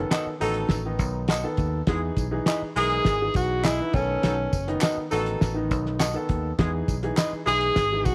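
A breathy tenor saxophone carries the melody up front, its vibrato and scooped notes giving a jazz-style lead to this joyful, uplifting snippet of 1960s-style soul, cut from a longer piece. Beneath it, a woody upright piano with audible action noise and long sustain provides the accompaniment, while a fingered electric bass sits punchy and direct at the bottom. A cloth-damped drum kit sounds dark and thuddy, with a fat snare and tight kick, and group handclaps and tambourine add a lighter layer of percussion. An electric guitar through a small old amp adds slightly broken-up, lo-fi stabs with tremolo from 0.1 to 7.3 seconds, and from 0.4 seconds a tight horn section plays a second line. The harmony moves between B7 and Emaj7 in a straight 4/4, all set in a small room with light reverb.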